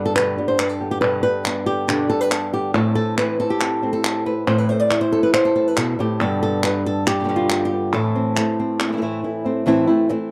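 A straight 4/4 pulse at 139 BPM drives this fiery, dramatic flamenco passage in A minor, cut from a longer piece, with crisp palmas hand claps ringing in a live room from 0.2 to 9.0 seconds. An up-front fingerpicked flamenco guitar carries the melody with audible finger squeak, while a second, boxy flamenco guitar plays stabs further in the background as the harmony moves between G and Am. The sound is a dry, close 1970s-style studio recording touched with light reverb.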